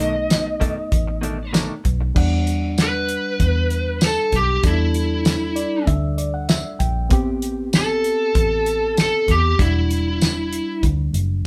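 Straight-eighth soul blues with a mournful, soulful mood, played live in one room, cut from a longer piece, with an overdriven lead guitar through a small cranked amp up front carrying the melody and taking a solo from 2.2 seconds over a bright, reedy electric piano bathed in spring reverb, which adds a fill between 5.3 and 7.1 seconds. A compressed, direct-recorded clean electric guitar adds picked stabs only until 2.0 seconds, while a dark, round, foam-muted fingered bass and a dry, polished 70s drum kit with a fat snare, tight kick, hi-hat, crash cymbal and tambourine anchor the groove. The harmony moves from a B7#9 opening into Em7 and Am7.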